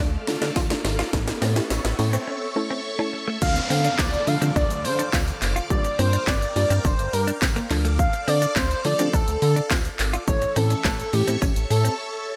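Driving and bittersweet, this dance-pop passage in D harmonic minor moves at 105 BPM in a straight 4/4, cut from a longer piece. It opens with a build-up over Dm and A, where a drum fill, a filter sweep and a background riser and downlifter gather tension before a brief break and a drop at 3.4 seconds. The punchy, up-front house drum kit, tape-warm with a cracking snare, sets kick, handclaps, hi-hat, shaker and crash against a distant, jingly tambourine, while a glossy, wave-folded synth bass pumps beneath the chords of Dm, Gm7 and A. A swirling phased string machine holds bright sustained chords high above, a soft round pluck fills in darker accompaniment in the background, and a clean, direct-recorded electric guitar plays a compressed picked riff. From 3.4 seconds an airy, dreamy lead carries the melody with detuned unison, vibrato, portamento and tape echo, all set in light digital ambience.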